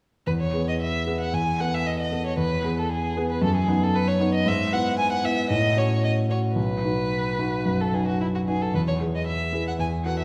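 The rhythm moves in a brisk four-beat metre, but the pulse is shaped with a flexible rubato that gives this quick classical-period movement for piano trio a graceful, lively character. A single bowed violin carries the melody, its tone rich and focused, with vibrato coloring the line, while a concert grand piano supplies the accompaniment in a clear, polished voice that reaches down to a deep bass. Both instruments play together from 0.3 to 10.2 seconds, sitting up front with the piano slightly more present than the violin. The piano's long sustain and audible action noise lend the accompaniment an intimate, close quality. The harmony settles on the home chord, passes through a brief colored variant and the dominant, and returns home near the close. A generous recital hall reverb surrounds the pair, heard from further back in the room, and the passage is cut from a longer piece.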